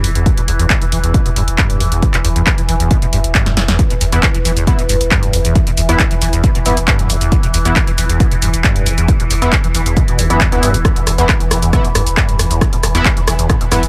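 A straight 4/4 groove drives this hypnotic peak-time techno excerpt: a heavy, tape-warm electronic kick lands from 0.3 seconds alongside a punchy kit of snare, handclaps, hats, rim click and shaker, while a deep, round sine sub bass holds a low E, a squelchy, resonant acid saw riff pumps with dub echo under a constant filter sweep, a warbling vintage drone with moving overtones hovers in its own reverb, and from 4.1 seconds an edgy, nasal sync-sweep polysynth adds chorused stabs in the background, all set in a digital ambience.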